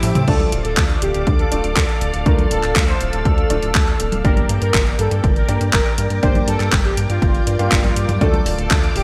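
A bold, fat analog synth brass carries the bittersweet, melodramatic melody of this italo disco excerpt at 121 BPM in D minor, its warbling, vibrato-laden tone roughened by 12-bit sampler grit and trailed by chorus and digital delay. A lush string machine holds slow-attack chords above a glossy, detuned synth bass, while a gated, overdriven 12-bit drum machine opens with a fill and scatters cabasa, congas, handclaps, hi-hat, toms and crash cymbal. From 0.3 seconds a punchy, layered electronic kick joins, and a clear concert grand piano adds short-sustain stabs in the background under a filter sweep, all over a Dm to Gm progression that returns to Dm, in bright 1980s-style digital production.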